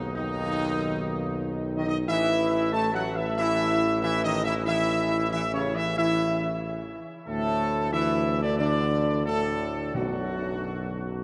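A straight 4/4 pulse at 92 BPM carries this triumphant, majestic classical brass passage, cut from a longer piece, as a tight, up-front trumpet section with light vibrato and a soft attack sings the melody over a mellow solo tuba bass, while French horns and clear trombones hold sustained chords in the background, moving from B through A5 and D5 to B5, and soft-mallet timpani with a round tone enter very quietly at 9.9 s, the whole ensemble bathed in the long, echoing reverb of a vast cathedral.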